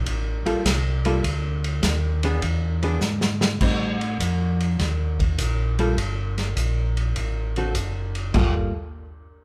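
Smoky and soulful, this fragment of a longer soul jazz organ trio swings at 101 BPM in G minor, with a round, mellow tonewheel organ carrying the bass line up front through a slow rotary speaker and audible key click, a vintage acoustic drum kit with a punchy kick, dusky cymbals and a pumping room sound marking a drum fill at 3.0 seconds, and a clean, compressed hollow-body archtop guitar picking out an accompaniment, all heard as a band playing live in one room under a moderate large studio reverb.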